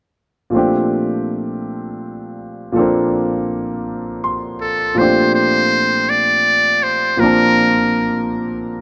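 A slow 6/8 lilt at 54 BPM carries this sensual R&B fragment in Bb major, where a natural-sounding concert grand piano with deep bass sits up front, opening on a Bbmaj13 chord at 0.5 s and adding a fill from 3.9 s as a buzzy, breathy trumpet with a metal mute enters at 4.6 s for a brief jazz-style solo, its tape echo blooming within a moderate echo chamber reverb.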